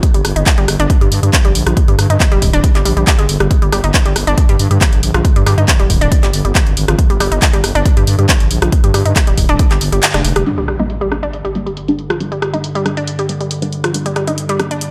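Light, digital ambience frames this hypnotic, intense slice of driving peak-time techno at 138 BPM in G minor, where a heavy, up-front electronic kick and a layered techno kit of handclaps, hi-hat and rim click with low-pass filtered hats push a growling, thick FM bass with tube saturation, a nasal, detuned analog pluck riff through chorus and digital delay, and an eerie, metallic drone pumping in the background, until the kick and bass fall away around a band accent at 10.0 s and, from 10.5 s, an electronic impact and muted, deep dub chord stabs with phaser arrive as a filter sweeps the drums.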